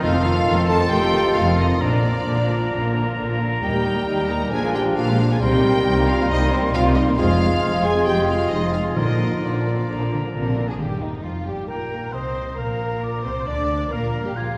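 A dramatic, spirited yet graceful fast romantic movement for symphony orchestra opens with the full ensemble at once, a smooth, vibrato-rich violin section carrying the melody over a lush second violin line, airy flute, clear clarinet and distant oboe, while violas, a mellow bassoon and background French horn chords fill the middle beneath a lush cello and woody double bass foundation, with round soft-mallet timpani appearing from 9.0 to 11.4 seconds, the bassoon dropping out at 10.6 seconds, all heard from further back in a reverberant concert hall in this excerpt cut from a longer piece.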